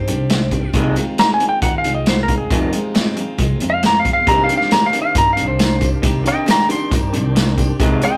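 Folk rock with a heartland rock lean, this dusty, wistful excerpt moves at 136 BPM in a straight 4/4 in C minor, cut from a longer piece. Up front, a clean, compressed lap steel guitar carries the melody as a slide solo with volume swells and tape echo, riding high over the band. A punchy vintage drum kit with a medium-tuned snare and rolled-off top sits close, while a woody, growly upright bass holds the low end and a slightly broken-up electric guitar through a small old amp plays a lo-fi riff alongside a bright picked steel-string acoustic guitar, whose finger squeak comes through in the background. Around 4.3 seconds a fat tonewheel organ slips in very quietly with sustained chords, key click and slow rotary vibrato, and a jingly tambourine joins just after. The harmony settles on Cmadd9, moves to Ab6/C, and returns to Cmadd9, all captured as a rough rehearsal-room recording with tube saturation and a small room's moderate reverb.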